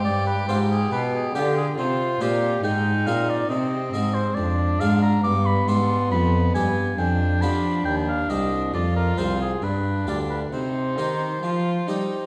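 A bowed gut-string violin carrying the melody, an up-front oboe with light vibrato on the second line and a rich, nasal cello bass open together before a brilliant, plucked harpsichord joins at 0.1 seconds in this radiant, flowing passage cut from a longer baroque-style sonata movement in C minor at 69 BPM in 3/4, set in a recital hall and heard from further back in the room.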